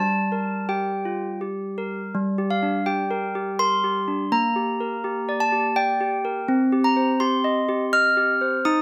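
Light reverb surrounds a solo set of handbells, placed up front with a bright, ringing tone and the clear strike of hard clappers across a range from G3 to F6. This fragile, wistful classical lullaby moves in a gentle triple metre, with its opening phrase returning at 2.1 seconds, while the harmony stays on a minor chord before shifting at 6.5 seconds. The recording is a short excerpt cut from a longer piece.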